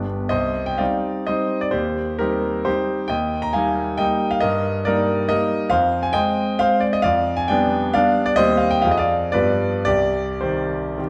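A clear concert grand piano sits up front in a wet recital hall, its polished, intimate tone carrying deep bass, long sustain and audible action noise. This classical excerpt is a romantic triple-time dance in C minor with dotted rhythms, moving between 103 and 148 BPM with a rubato feel that makes it capricious and nostalgic. The solo piano ranges from G1 to Bb5, and its harmony turns from C minor through E-flat and F minor before G7 leads back to C minor at 9.9 seconds.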